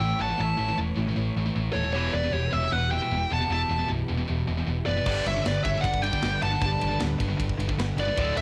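Relentless and aggressive, this heavy metal fragment from a longer piece drives forward in a straight 4/4 over a simple A, E minor and G progression. A dark, high-gain lead guitar carries the melody up front with a worn cassette-tape tint, while a second high-gain lead plays a warmer supporting line beneath it. Three distorted rhythm guitars churn out riffs in the background: one overdriven, one double-tracked and compressed, and one with a scooped tone. A bright, growly picked bass anchors the low end, and a lush bowed string section holds sustained chords far back in the mix. At 5.1 s a tight metal drum kit crashes in with bright cymbals, a tight kick and a medium-tuned snare, its sound gritty and tape-saturated, all set in a dry home cassette recording.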